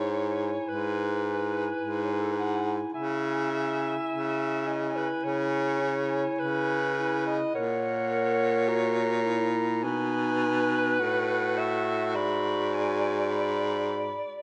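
In an unhurried rubato 4/4, this tender classical passage for single-reed quartet, cut from a longer piece, sets a clear clarinet melody above a distant, roomy alto saxophone second line with vibrato, a mellow, smooth-topped second clarinet supplying the accompaniment, and an up-front baritone saxophone carrying a bright, vibrato-laden bass, all four sounding together for about 14 seconds within a moderate concert hall reverb.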